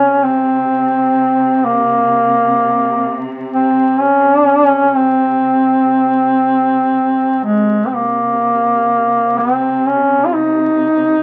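In free time, this solemn, longing Caucasian folk lament in C phrygian, cut from a longer piece, sets a warm, roomy solo duduk singing the melody up front with vibrato and scooped notes over a lush, bowed cello section that holds a quiet, expressive C3 drone throughout, the phrase shifting into a new section at 7.9 seconds while moderate studio reverb and the crackle of a very old 78 rpm record frame the sound.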